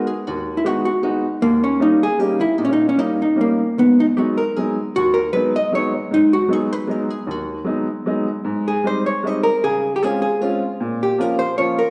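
In a rubato 3/4 at 154 BPM, this nostalgic, bittersweet musette waltz, cut from a longer piece, sets a dark, clean, picked electric hollow-body jazz guitar melody up front over a woody, open upright piano accompaniment with long sustain, moving from G# minor to Ab major at 8.5 s, all bathed in the lingering reverb of a church or concert hall.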